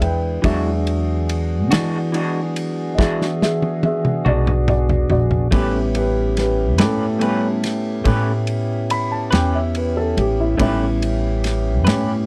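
Soulful and rollicking, this slow 12/8 blues, cut from a longer piece, features a dark, mellow grand piano soloing over a woody pizzicato upright bass, clean tonewheel organ chords turning through a slow rotary speaker, a slightly broken-up lo-fi electric guitar with harmonic tremolo entering at 0.4 seconds, and an up-front soul drum kit with dark cymbals that plays a fill from 3.0 to 5.5 seconds, as the harmony moves from E9 to A9, all captured in a dry, close 1970s-style studio sound.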